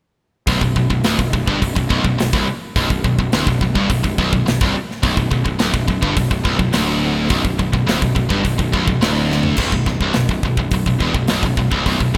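A straight 4/4 pulse at 105 BPM drives this aggressive, heavy metal excerpt in B minor, where a scooped high-gain guitar and a tight, up-front distorted guitar grind out low riffs over a growly fuzz-picked bass and a polished, airy drum kit with bright cymbals and a tight kick, all in a rough home-demo mix with light small-room reverb, until a drum fill at 9.3 seconds tips the Bm vamp into a Cmaj7/B passage at 9.6 seconds.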